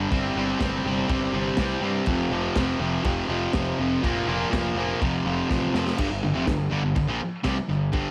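A raw, rowdy garage rock excerpt with light small-room reverb, built on an up-front, bright, double-tracked fuzz guitar riff over a round, overdriven picked electric bass and a crunchy, gritty breakbeat drum kit with dark cymbals, a high-tuned snare and a tight kick, moving straight at 123 BPM in 4/4 through C5/G, F5 and Bb5/F before a drum fill at 5.5 seconds tips it onto G5 at 6.0 seconds.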